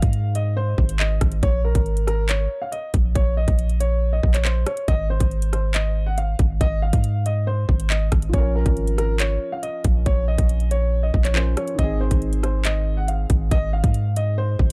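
Ominous and tense, this drill cut moves at 139 BPM in 4/4 with a half-time feel, taken from a longer piece. A dark, boxy concert grand carries the melody between Bb4 and Gb5, its notes trailed by tape echo, while a felt-muted upright piano adds soft, intimate accompaniment with audible action noise, playing at the start and then returning from 8.3 seconds onward. Underneath, a long sustained 808-style bass sits up front, deep and sine-like with a fast attack and decaying tail, spanning Ab1 to Ab2. The drill drum kit is electronic and forward in the mix, pairing a hard-clipped kick with metallic hi-hats, handclaps and rim clicks. The harmony circles around Ab, passing through Absus24 and Bbm, and the dry, dark production keeps the whole track close and heavy.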